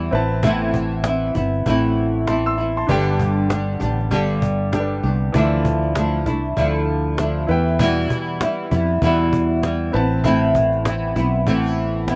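A double-tracked flamenco guitar, fingerpicked with audible finger squeak, carries the accompaniment in this reflective, tender acoustic pop excerpt, joined from the start by a clear, present, polished baby grand piano and a round, dark fretless electric bass sitting punchy and up front. A snappy cajon with snares, struck with hard hands and miked close, comes in at 0.1 seconds, giving a lightly swung feel as the harmony moves from Amadd9 through G, Dmadd9 and Em before returning to Amadd9. The outdoor sound is dry, with little reverb.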